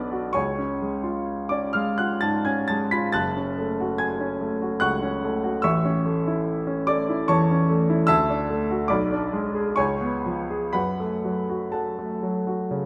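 Passionate and brooding, this romantic classical character piece for solo piano moves in a rubato 3/4 at 58-75 BPM in F# minor, its clear, present grand piano sitting up front across a range from F#1 to B6 as the harmony travels from C# through F#m, A and D to C#7 before settling back on F#m at 10.7 seconds, all bathed in a wet recital hall reverb with a faint mains hum beneath, in a 12.9-second passage cut from a longer piece.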